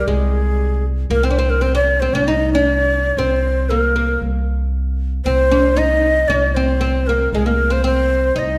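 A straight 4/4 pulse at 116 BPM carries this stately, warm 8.6-second cut from a longer Arabic maqam ensemble piece in C maqam saba, where a breathy, end-blown ney with vibrato and a crisp attack leads the melody up front, a bright, woody oud with double strings and slapback echo plays a plectrum-plucked second line beneath it, and a thumpy pizzicato upright bass holds C2, the ensemble sitting in a moderate recital hall reverb.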